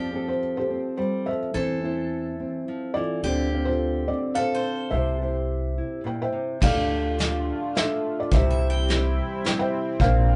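A felt-muted upright piano opens this tender, intimate folk excerpt, its dark, thick-felt tone carrying the melody with audible action noise, alongside a thumb-plucked nylon-string guitar and a woody pizzicato upright bass, both up front. A picked steel-string parlour guitar adds bright, boxy arpeggios, moving at 106 BPM in a straight 3/4 through chords from Fadd9 to Am/E, Dm7 and C. At 6.6 seconds a shimmering, retro pulse-width pad enters with soft-attack sustained chords under chorus, and a vintage brush drum kit joins with dark cymbals, a medium-tuned snare and a boomy kick. The steel-string guitar stops at 9.6 seconds while the rest continue over Dm and C. The band sounds as if playing live in one small room with a moderate reverb and a top end that stops around 10.5 kHz.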